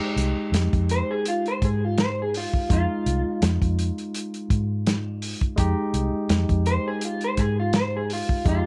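An electric guitar through a small old amp carries the melody up front, its slightly broken-up, picked tone bathed in lush chorus as it enters at 0.9 s, lending this mournful, soulful straight-eighth soul blues excerpt in F minor at 83 BPM its voice over a sustained Fm7. Beneath it, a barky, bright tine electric piano comps cleanly while a vintage foam-muted fingered bass stays dark and round in the low register. A dry, muffled soul drum kit with a tight kick and medium-tuned snare sits close and lo-fi, all within light reverb.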